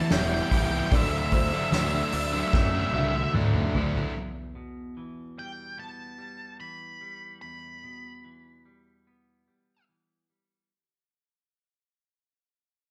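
A brooding, cathartic post-rock passage in E minor opens at a slow 74 BPM in straight 4/4, with a dark, fuzz-laden octave lead guitar singing its melody high over quiet, twangy, scooped arpeggios from a clean electric guitar and faint, mellow figures on a felt-muted upright piano whose soft action noise adds intimacy. An overdriven semi-hollow guitar with spring reverb and a thick fuzz guitar set further back play the riff together over Em moving to Dadd9, while a growling fingered electric bass adds bright, punchy overdrive underneath. A soft-mallet drum kit sits up front with a punchy kick and medium-tuned snare, yet sounds distant and roomy, rolling into a fill in the closing moments of the opening section. At 4.2 seconds the harmony returns to Em as the drums, bass, piano and riff guitars drop away, and the piece fades out with the lead guitar ringing until 9.8 seconds and the clean arpeggios lingering to 10.7 seconds. 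The whole band plays live in one large studio, with a moderate reverb giving the fragment a spacious depth.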